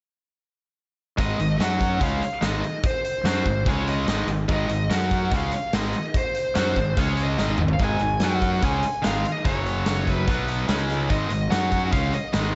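A straight 4/4 hard rock drive at 145 BPM, built on a punchy, up-front kit with a medium-tuned snare and a fill at 7.4 seconds, under a fuzzed, fingered bass that growls beneath two picked rhythm guitars, one bright and tight, the other sludgy and very quiet. Above them, a dark, high-gain lead guitar carries the melody with a slapback echo across a chord movement centred on Ab5, Gb5 and Db5, with a B5 at 10.3 seconds. The mood is anthemic and powerful, with light reverb and a rounded top end giving this short cut from a longer piece a dense, muscular sound.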